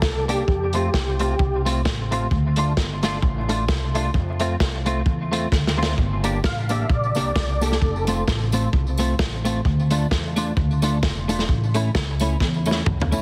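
A gritty, saturated breakbeat kit with a tight kick sits up front in this mischievous, driving ska excerpt, joined by a growly, woody pizzicato upright bass and a bright, twangy clean electric guitar carrying chorus and tape echo over a cycle of F, D minor, G minor and A chords. A lightly overdriven tonewheel organ with key click, chorus vibrato and a slow rotary speaker adds short melodic phrases, returning at 6.5 seconds just after a jingly tambourine enters softly in the background at 6.2 seconds. The whole mix has a heavily compressed radio sound with vinyl crackle and a small-room reverb.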